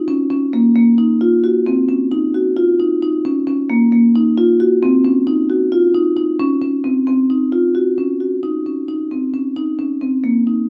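A straight eighth-note pulse in 7/8 drives this short cut from a longer progressive instrumental piece, giving it a driving, tense momentum. A lone marimba played with soft mallets carries the whole passage, sounding from 0.1 s to 10.6 s and staying within the span from Bb3 to Gb4. Its rosewood bars give a woody, round tone with an airy edge, and the instrument sits up front in the mix. A moderate small-room ambience frames the marimba closely. At 8.0 s the music moves into a new section that runs on until the cut.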